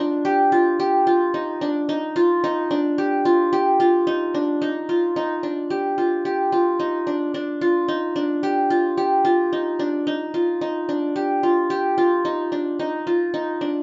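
A dark, warm studio sound with moderate reverb frames this intricate, bright progressive instrumental fragment at 110 BPM in 5/4, where a solo qanun, plucked with fingerpicks and sitting up front, rings out its bright-edged triple strings between D4 and G4 over a Dmadd11 opening before moving into a new section at 4.6 seconds and carrying on until 13.8 seconds.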